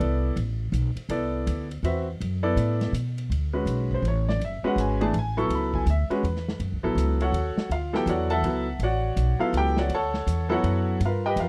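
A dry, close studio sound with a 1970s character frames this short cut from a longer modal jazz piece in a swinging 3/4, its mood searching and open. A brilliant, present upright piano with long sustain carries the chords up front, beside a woody, thumpy pizzicato upright bass, while a softer, smooth big-band drum kit with a punchy kick, ride and hi-hat, and a rolled-off top swings underneath. Opening on Cmaj9 and Bm7/C, the harmony settles into D lydian at 3.3 seconds, moving between Dmaj9 and F#m chords.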